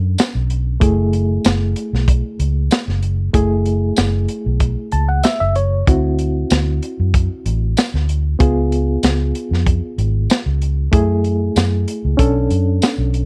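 Straight-eighth soul blues in F# minor at 95 BPM, brooding and mournful, this dry, close 1970s-style excerpt sets a reedy, worn, slightly out-of-tune electric piano with fast tremolo over a dark, round, foam-muted electric bass and a crunchy, gritty breakbeat kit of hi-hat, kick, snare and tambourine entering at 0.2 seconds, with a brief electric piano fill at 4.6 seconds as the chords move from Bm7 and F#m7 through D7 and C#7.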